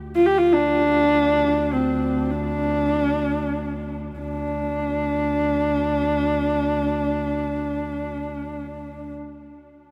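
Vast and solemn, this piece of Mongolian folk music is cut from a longer work. A bowed double bass with a boxy tone holds a low D drone from the start, shaded with vibrato and portamento. From 0.2 seconds a single horsehead fiddle sits up front, its husky, smooth-topped voice carrying an expressive melody between C4 and G4 with vibrato and sliding portamento, all set in a huge, ambient reverb with a 7.2-second tail.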